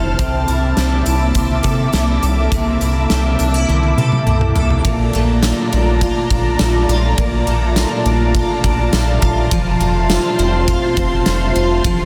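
A straight 4/4 groove anchors this dreamy, ethereal dream pop passage cut from a longer piece, driven by a huge arena drum kit with a punchy, softly clipped kick, a medium-tuned snare, bright cymbals, tambourine and a pumping hall sound, plus a drum fill from 3.7 to 4.8 seconds. A round, dark analog bass sits up front beneath a shimmering, octave-doubled twelve-string acoustic guitar picking arpeggios through ensemble chorus and tape echo. An airy, detuned pad with a slow attack and long release holds sustained chords in chorus and reverb, moving from C13 to Bbmaj7 at 4.8 seconds and settling on F, all under a dense, heavily limited modern master with light reverb.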